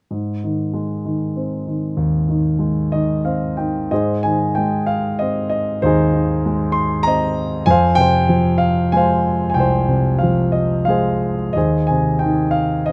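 Classical solo piano in A-flat major, hopeful and lyrical, moving in a flexible rubato three-four around 88 to 98 BPM in this short excerpt cut from a longer piece. A warm concert grand carries everything alone from 0.1 seconds, its deep bass and natural, up-front tone spanning from low C2 to C6, with a brief fill at 2.6 seconds leading into a new section at 3.9 seconds that turns toward F minor before settling back on A-flat. Close, detailed miking and light reverb keep the instrument intimate and clear.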